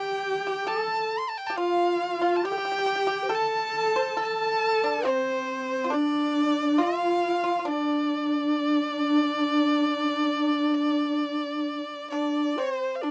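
A wet booth sound with a short reverb frames this graceful, wistful fragment of Chinese traditional chamber music, moving in a free, rubato 4/4. Up front, a single bowed erhu carries the melody with a clear, earthy tone, light vibrato and gliding portamento, while a breathy, reedy low bamboo xiao with crisp attacks and rolled-off highs, a dry, percussive fingerpicked pipa, and a husky horsehead fiddle with soft attacks and expressive portamento each play a second line. The horsehead fiddle stops at 12.1 s, leaving the other three to finish the passage.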